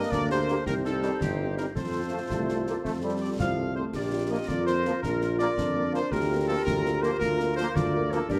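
A spirited, festive military-style wind-band march in 6/8 at 110 BPM in Bb major, this excerpt from a longer piece puts a clear, lightly vibrato-tinged trumpet section up front on the melody over a soft-attacked tuba bass, while a shadowy, distant woodwind section and a warm, roomy euphonium carry second lines, concert snare, bass drum and dark clash cymbals drive it from 0.1 seconds, a very quiet, smooth-topped French horn section adds accompaniment from 0.3 seconds, and a tight, vintage-toned trombone section holds sustained chords in the background from 0.5 seconds, all captured with close, detailed microphones in a moderately reverberant scoring stage.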